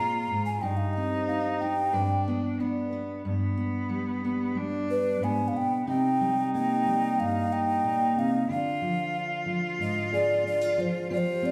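A breathy, hollow alto ocarina carries the melody from the outset, featured as a solo through the first 3.3 seconds, while a bright, fingerpicked steel-string guitar with audible finger squeak sits up front and a rich, bowed cello adds an intense second line with vibrato, giving this reflective, wistful C minor acoustic folk fragment at 92 BPM the feel of a small band playing live in a wet stone room, its chords moving from Fm through Cm/G and G to Cm7 at 5.9 seconds and Ddim.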